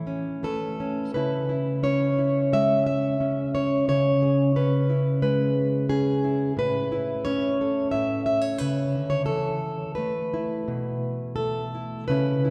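Rubato and loosely paced around 88 BPM in 4/4, this gentle, peaceful folk excerpt features a single fingerpicked plugged-in steel-string dreadnought guitar, up front and warm with audible finger squeak, moving through Aadd9, C#m7 and Esus4 chords across A2 to E5, bathed in a wet church reverb that lingers for 2.9 seconds over its 12.5 seconds.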